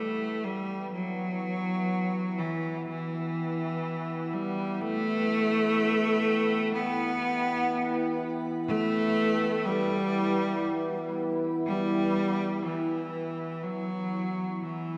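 A rich, smooth bowed cello sits up front in this ominous ambient piece, carrying a melody with light vibrato through shimmer reverb and analog delay. Alongside it, a deep, warbling synth pad holds sustained chords with chorus and shimmer reverb, fading in over the first 12.6 seconds before the harmony shifts to an Esus2 chord. The whole mix drifts in a lush hall reverb, giving this dreamy, unsettling fragment of a longer work a haunted, vintage glow.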